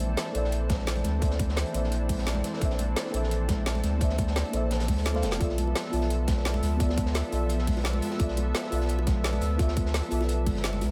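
Dreamy and warm, this short cut from a longer liquid drum and bass piece sets a mellow, round FM electric piano, dark with chorus, phaser and delay under a continuous filter sweep, against a lush, airy unison pad that pumps with the sidechain as the harmony moves from Bbmaj9#11 to a rootless G13/B at 5.4 seconds. A deep, thick sub bass sits up front alongside a garage kit with a woody snare and metallic hats, and a tight, layered electronic kick enters at 0.7 seconds. In the background sit a gritty, rolled-off breakbeat kit with a high-tuned snare and hard-handed congas and bongos, with a brief drum fill at 5.1 seconds, all held in a light studio reverb.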